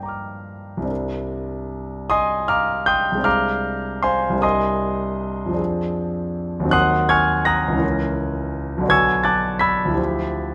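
A solo concert grand piano, intimate and up front with deep bass, long sustain and the clatter of its action audible, carries this nocturnal, wistful impressionist classical passage in a rubato 6/8, taken from a longer piece. The harmony drifts through colored chords, from Cm9 and Fm6 through Ebm6, Dbm6 and Bm6 before settling on Dm11 at 10.0 seconds. Close, detailed miking gives the polished tone a present feel, set in a moderate scoring-stage reverb.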